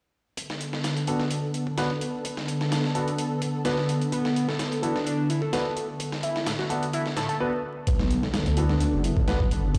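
A gently swung breakbeat from a dusty, sampler-style soul kit with a thumpy kick and overdriven grit drives this funky, raw cut from a longer breaks track, over a lush, warbling unison pad holding a sustained Bm7 that pumps with sidechain. A polished grand piano adds filtered stabs with dub echo, and at 4.1 s a screaming, guitar-like synth lead enters with a phased riff and vibrato. At 7.9 s a swirling, detuned saw bass arrives up front, and the whole mix sits in a large studio reverb with vinyl crackle, as if played on a big sound system in a bare room.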